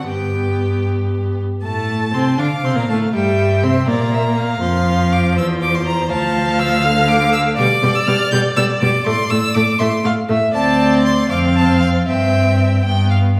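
Up front in the mix, a warm, expressive cello carries the bass with vibrato, soft attacks and portamento beneath a quick, lively and graceful classical-period string quartet movement in F major, moving in 6/8 at 80 BPM on the dotted quarter. A clear, close first violin sings the smooth, even melody high above until 12.8 s, while a more distant second violin adds a vibrato-laden second line and a rich viola fills in the accompaniment. The quartet sounds captured in a church or concert hall with a wet recital-hall reverb, its harmony moving through chords such as Dm, Amadd11 and Dm7 before settling on G at 12.9 s in this cut from a longer piece.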